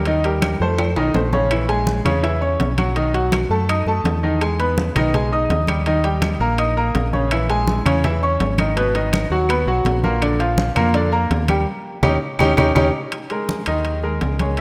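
A lush hall reverb wraps this rough home-demo mix of a driving, danceable salsa, a short cut from a longer piece moving at 165 BPM in a straight 4/4. Up front, a bright concert grand piano carries the accompaniment with a brilliant top and deep low register, running through chords such as A#m7b5, B7, Emaj7 and G#m7 before settling on G#sus2. A fingered electric bass sits equally forward, its dark, round, amped tone anchoring the low end. Behind them, low-tuned congas with a thick, damped skin add a warm pulse from a live room, while close, dry timbales ring out with metal-shell sparkle, and drum fills arrive at 0.8 seconds and again near 12.2 seconds. Woody claves sound distant in a large room, dropping out at 12.8 seconds during a band accent that drives toward the final return of the opening section at 13.1 seconds.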